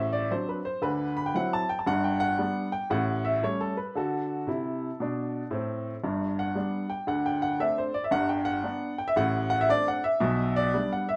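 Stride piano jazz with an exuberant, playful mood, moving at a brisk swung pace in four. A lone upright piano carries the whole performance from 0.0 to 11.2 seconds, spanning a broad range from deep bass notes up into the bright upper register. Its tone is clear and woody with a natural character and long sustain, placed up front in the mix. The harmony cycles through dominant-flavored chords such as D7 and D9 before settling repeatedly on G, with bare fifths and inverted chords adding color along the way. A wet, large-studio reverb surrounds the piano with a live-room feel, and the clip is cut from a longer piece.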